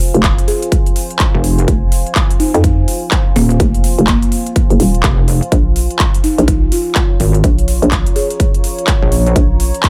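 A swung 16th-note groove at 125 BPM in 4/4 drives this swaggering, gritty bass house excerpt in F minor, moving from Fm to Bbm at 5.5 seconds. A punchy, up-front electronic kick enters at 0.2 seconds, layered with a big-room dance kit of handclaps and crisp hi-hats, both carrying a tape-warm tone and small room ambience. Underneath, a hollow, bouncy FM bass knocks with tube saturation and sidechain pumping, joined at 1.3 seconds by a heavy, pulsing pluck wobble bass thickened with chorus and overdrive. A buzzing marimba played with soft mallets carries the melody from 0.5 seconds, its woody, round voice sent through a digital delay. Behind it all sits a deep, moody sawtooth pad with a sub octave, slow attack and long release, softened by chorus and built-in reverb and breathing with the same sidechain pump, while the overall mix stays dry and loud.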